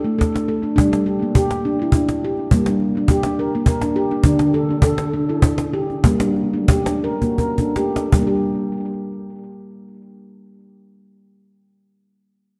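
A dark, warm production places the instruments in a lush concert-hall reverb with a touch of small-room ambience. This gentle, meditative world piece for tuned percussion, cut from a longer work, sits in G minor with a 3/4 metre, a straight feel, tuning at A4 = 442 Hz and a tempo that moves between 78 and 103 BPM. Up front, a ringing nitrided-steel handpan plays fingertip arpeggios from D3 to Bb4, its boxy tone carrying a tape echo as the harmony shifts between D5 and G minor. A close, dry, woody cajon struck with hard hands sits alongside, with faint snares rattling beneath its acoustic thump. The music begins slowing down at 4.3 seconds, the cajon plays a drum fill from 7.2 seconds and stops at 8.5 seconds, and the handpan rings on alone to the close.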